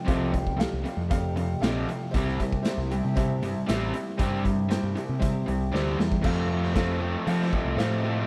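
Classic rock at 117 BPM with a swaggering, confident strut, this short excerpt is driven by a double-tracked, overdriven garage guitar riff up front and a growling, round overdriven bass, over a gritty, boomy-kicked drum kit pumping in a bright stone room, while a woody upright piano with audible action noise sits in the background and a shimmering, octave-doubled twelve-string acoustic guitar adds a very quiet layer through the move from Fadd9 to C, until a drum fill at 5.7 seconds lands the band back on F at 6.2 seconds.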